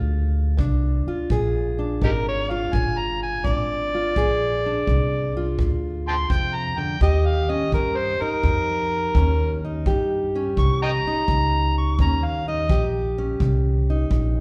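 A gritty, overdriven harmonica takes the lead from 2.0 seconds with tongue slaps and scooped notes, fronting a swaggering, soulful acoustic country blues excerpt at 84 BPM with a swung feel in Bb mixolydian, backed by dark, woody fingerpicked steel-string guitar on old strings, pizzicato upright bass, and a punchy brushed kick drum, all moving from Bb7 to Eb7 in a church-like hall reverb.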